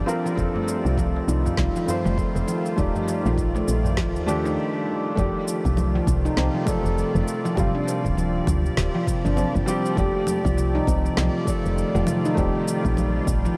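A felt-muted upright piano, a tense, detuned bowed-like drone, a round FM bass and a ringing handpan open this earthy, dreamy organic downtempo excerpt at 100 BPM, swung on the 16ths in F mixolydian and tuned to A4 = 435 Hz. The intimate piano, with its audible action noise, and the slow-attack, vibrato-laden drone both pump with sidechain, while tape echo trails the piano and the bright nitrided-steel handpan arpeggios above a tube-saturated bass, as the chords move among F13, Ebmaj9 and Gm7. An overdriven electronic kick sits deep in the background beneath an electronic shaker, woody snare and congas, and a crisp, very quiet metal-shell darbuka plays from 0.6 to 4.6 s, the whole mix soaked in a huge ambient reverb.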